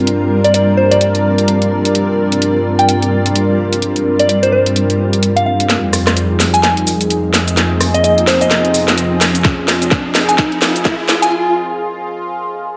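A dark, warm production sits in a wet digital room, giving this bouncy, aggressive bass house excerpt a shadowy sheen over its swung sixteenth-note groove. A nasal, detuned sawtooth pad holds sustained chords up front, its chorus and moving notch keeping it evolving while sidechain pumping makes it breathe with the beat, and beneath it a blurred, cloudy granular pad drifts in with slow attack and its own built-in reverb, pumping as well. From 0.4 s a soft, pure FM bell carries the melody, its mellow, decaying notes smeared by chorus and digital delay. The garage drum kit arrives almost at once with warm, filtered hats, a rim click, shaker and a cracking snare, and from 5.7 s, as the harmony moves from Gm to Fm7, it launches a drum fill that drives a build-up. A background riser climbs in from 7.0 s, a tight electronic kick punches through at 9.4 s, and at 11.3 s everything but the sweeping pad drops away for a brief break before the excerpt cuts off.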